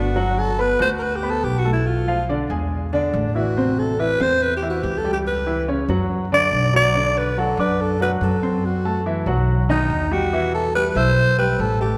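Afro-Cuban jazz at 142 BPM, danceable and sunny, cut from a longer piece, with a growling, raspy alto saxophone soloing up front with scooped notes over a warm baby grand piano's short-sustained accompaniment and a woody pizzicato upright bass, all playing throughout as chords move from Gmaj9 to Em and a church reverb casts a long, wet halo around them.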